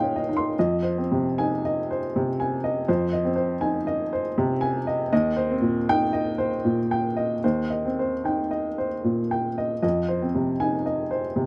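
Neoclassical minimalist piano in F minor, wistful and melancholic, moving at a rubato 72-81 BPM in 3/4. A solo upright piano carries the whole 11.5-second fragment of a longer piece, its woody, boxy tone heard up front and intimate, with audible action noise and short sustain under a light reverb. The harmony rocks between Eb6 and Fm7, settling back on Fm7 at 9.8 seconds.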